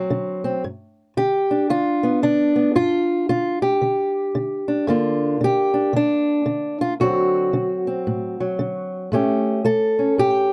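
Dark, lightly reverberant production frames this rollicking, swaggering 10.5-second cut of acoustic country blues at 113 BPM in a swung 4/4, where a lone, up-front fingerpicked ladder-braced acoustic guitar, woody and boxy with old strings, ranges from D2 to A4 over a D7, G7, Gm7, D7 and A7 progression.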